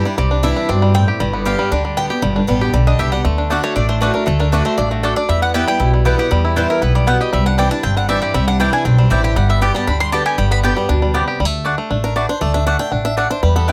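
Virtuosic and rustic, this fast bluegrass excerpt runs at 236 BPM in a straight 4/4, with a picked mandolin carrying the melody from 0.2 s to 10.6 s while a second, rounder mandolin adds stabs from 3.5 s. A twangy banjo played with fingerpicks spins percussive arpeggios, a boxy picked swing-style acoustic guitar with audible finger squeak supplies accompaniment, and a thumpy, woody pizzicato upright bass on gut strings sits up front over a progression moving through Cadd9, G, D and Em. Close, detailed microphones and little reverb keep the sound dry and intimate, and at 11.4 s a steel-string acoustic guitar solo arrives as the music shifts to a new section.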